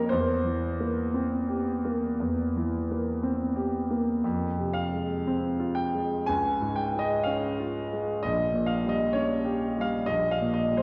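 Classical romantic nocturne for solo piano, mournful and yearning, moving in a rubato 4/4 at about 56-65 BPM, where an up-front concert grand with a clear, open tone and deep bass carries the harmony through C7/E, Fm, Db and Gdim/Bb, set in a wet recital hall reverb and coloured by worn cassette tape whose warbly pitch drift wavers across this brief fragment cut from a longer piece.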